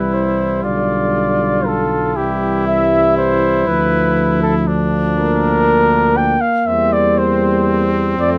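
A lightly reverberant, stately brass quintet in C major at 119 BPM in 3/4, cut from a longer piece, where a mellow trumpet carries the melody up front with light vibrato over a clear second trumpet, while a mellow French horn and a close-miked, gently attacked trombone sit in the background and a mellow bass trombone anchors the bass, the harmony moving from C through G7/B, Bdim/D and Bb/D to C7/E.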